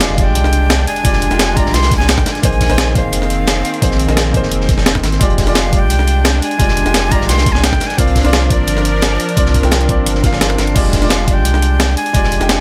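A gritty, compact small-room sound frames this melancholic, soulful liquid drum and bass passage at 173 BPM in F dorian, cut from a longer piece. A breathy, bright jazz flute carries the melody with vibrato and a crisp, chiffy attack, trailed by tape echo. A dark, mellow grand piano with long sustain and delay accompanies it, while a lush, thick detuned unison pad, chorused and pumping against the beat, holds chords in the background, entering at 0.1 seconds. A deep, round sine sub bass anchors the low end, and an overdriven, thumpy electronic kick plays from 0.2 to 12.2 seconds. The drums layer a compressed, sampler-style breakbeat kit with crash, hi-hat and a medium-tuned snare up front over a saturated, smooth acoustic break with a rolled-off top sitting further back. A very quiet electronic impact marks the opening second, and the harmony moves from Fm69 to Bb9sus4, back to Fm69, then to C9sus4 before settling on Fm69.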